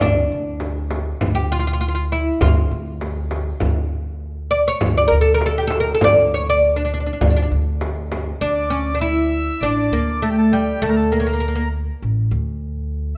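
Soulful and hypnotic, this Arabic maqam ensemble piece moves at a straight 100 BPM in 4/4 in D maqam nahawand, tuned to A4 = 441 Hz. An up-front, woody fretless oud with doubled strings carries the plectrum-plucked melody over a growly pizzicato upright bass and a small, bright frame drum that stops at 8.3 s. At 8.4 s a reedy, mid-forward accordion enters with a second line. The oud drops out at 11.6 s and the accordion at 11.7 s, leaving the bass to close this fragment of a longer piece in a moderate recital-hall reverb.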